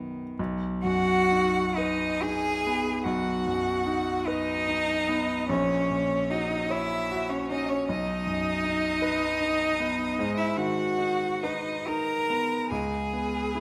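The violin carries the melody in a rich, smooth and even voice with vibrato, sitting distant in the mix as it enters at 0.8 seconds and sings in its upper register above the ensemble. This is a slow, lyrical and tender romantic movement for piano trio in B major, moving in a flexible rubato 12/8 at roughly 42-54 beats per minute. Up front, a clear bowed cello with vibrato provides a smooth, even second line, while the grand piano accompanies with an intimate, natural tone, its action noise audible through close, detailed microphones. The harmony passes from B through F#/A#, back to B, then to G#m7 and a C#7(no3) near 12.7 seconds as the clip, cut from a longer piece, ends. A moderate scoring-stage reverb gives the trio a gentle sense of space.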